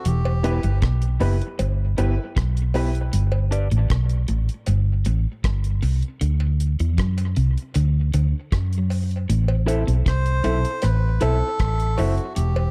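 A dub reggae passage cut from a longer piece, spacious and deep in mood, with a dark production and a straight, unhurried 4/4 feel. The round, foam-muted electric bass sits up front as the anchor. Beneath it, a dry acoustic drum kit with a tight kick, hi-hat and rim click holds the groove. A clean, picked electric guitar riff sits low in the background under tape echo, while a cowbell line, heard alongside maracas and group handclaps, stays close and dry behind a high-pass filter and its own echo. Near the start and again from about 9.7 seconds, a slightly broken-up, compressed electric guitar with vibrato and woody upright piano stabs with audible action noise and long sustain join in, both filtered and echoed. A reedy, breathy melodica offers a brief phrase at the opening and returns at 10.1 seconds. Meanwhile a filter sweep runs through the first 9.3 seconds as the harmony moves from Em through G and D to Am.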